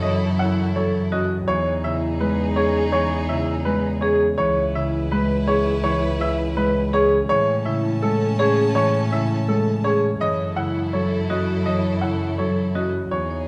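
A metallic vibraphone with medium hard mallets and slow motor vibrato spins arpeggios through this bright, hypnotic minimalist classical fragment at 165 BPM in 4/4. Above it, a clear baby grand piano with short sustain carries the melody, while a thumb-plucked Celtic harp adds resonant accompaniment and an intense chamber violin section holds bowed, vibrato-rich chords. Beneath them, a smooth, distant bowed double bass anchors an F#m7, Emaj7, C#m7, Amaj7 cycle, all set in moderate scoring-stage reverb with a dark production.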